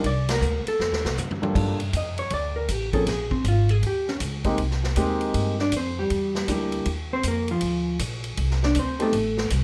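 A cool, swinging small-group jazz fragment opens with a band accent at 0.2 seconds from dark, clean hollow-body guitar, up-front concert grand piano with deep bass, woody pizzicato upright bass and a natural acoustic drum kit with a punchy kick. After a drum fill, the guitar takes a fingered solo from 1.6 seconds over seventh and suspended chords, in a close, detailed recording with little reverb.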